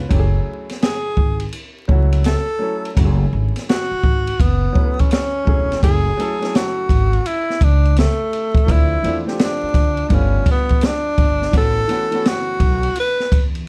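Cool and smoky, this swung 84 BPM jazz-hop cut in F# minor features a breathy, whispered tenor saxophone, intimate and up front with vibrato, carrying the melody from 0.8 s over a woody, thumpy pizzicato upright bass, a vintage, short-sustained upright piano playing chords that move from F#m9 through Dm7 and G9 to A69, and an open jazz kit with dark cymbals, a high-tuned snare and a boomy kick, set in a dark production with vinyl crackle and little reverb.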